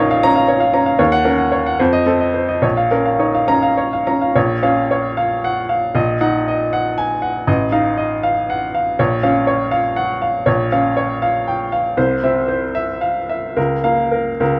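A bright, woody upright piano sits up front in a moderately reverberant large studio, its short-sustaining notes ringing with a natural character across a range from A1 to Bb5. This fragment of a longer romantic character piece in Bb minor unfolds in a rubato 6/8 at roughly 67-84 BPM in dotted quarters, with a bittersweet, stormy mood. An opening section moves through Bbm, Ebm7 and F7, then at 4.4 s a second section takes over, passing through Ebmadd11/Bb and Gm7b5/Bb before a C chord at 12.0 s gives way to a closing Bbm/Db.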